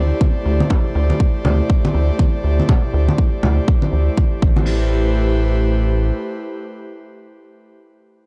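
An airy, breathy pad and a rubbery, hollow square bass open this smooth, hypnotic deep house excerpt at 121 BPM in A minor, both pumping against the sidechain, with chorus softening the pad's detuned chords and tube saturation thickening the dark, bouncy bass. A punchy, tape-warm electronic kick sits up front beside band-limited vintage congas, while a very quiet house kit adds crash and hi-hat under a 58% swing on sixteenths, and the drums and congas fall away around 4.5 seconds as the harmony moves from D9sus4 to Am9. The sound is a dry, gritty hardware recording set in digital ambience, with the pad holding on alone until 7.7 seconds.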